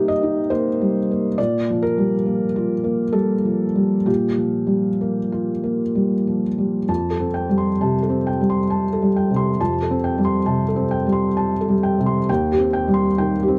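Intimate and melancholic, this short neoclassical minimalist piano excerpt drifts at 66 BPM in 3/4, its beats uneven and pulled by rubato, with the tuning set at A4 = 439 Hz. A felt-muted upright piano plays alone throughout, soft and mellow with audible action noise, sitting up front in light reverb and dark production as it spans Eb2 to C6. Its harmony moves from Cm7 and Gm7/Bb into an Fadd9 at 6.9 seconds, settling on Cm/Eb at 12.3 seconds.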